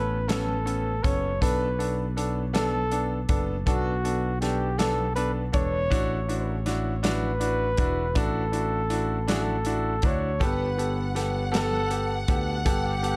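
In a slow, straight 6/8 at 53 BPM counted in dotted quarters, this dramatic, melancholic pop ballad in B minor moves through Aadd9, Bm7, Dadd9 and Gadd9 chords in a short section cut from a longer piece. A mellow flugelhorn carries the melody with light vibrato, soft attacks and scooped notes in a jazz-inflected solo voice, its line trailed by a delay. An upright piano with a woody tone and long sustain fills in the accompaniment beneath it, while a fingered electric bass sits punchy and up front in the low register. An acoustic drum kit enters at 0.3 seconds with hi-hat, a punchy kick and a medium-tuned snare, sounding airy and polished. At 10.4 seconds a symphonic violin section joins on a single high note, its bowed ensemble tone smooth, even and lush. The production is dark, set in a small room ambience.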